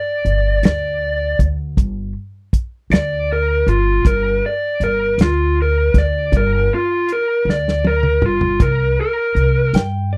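An overdriven lead guitar through a small cranked amp carries the melody in this soulful, rollicking slow blues in 12/8, its picked, lo-fi tone sitting dark and up front. Beneath it, a growly, woody pizzicato upright bass and a smooth soul drum kit with a tight kick and rolled-off top hold the groove, the drums playing a fill at 7.5 s before the harmony moves from G5 to C5. A compressed, slightly broken-up electric slide guitar enters quietly at 9.7 s, all in a dry, close 1970s-style studio sound.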